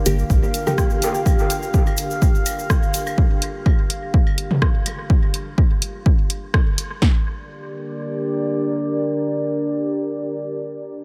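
Hazy and nocturnal, this dub techno fragment, cut from a longer piece, drifts on a single G minor chord through a dreamy mix soaked in a huge ambient reverb. A deep, moody pad of unison sawtooth and sine layers with a sub octave sustains chords throughout, its slow attack and long release softened by chorus and pulled by sidechain pumping. A muted, dark chord stab with a filter pluck and moving notch flickers briefly at the start through phaser and dub echo, gone by 1.5 seconds. Up front, a punchy analog drum machine drives a tape-warm kick and snare in a lightly swung 4/4, while a second drum machine part adds hi-hat and rim click trailing into dub echo. In the background, layered electronic claves and toms pump and echo as if re-recorded in a small room, and a grainy, bright acoustic cabasa rustles until 3.2 seconds, leaving the pad to linger alone after the drums stop at 7.1 seconds.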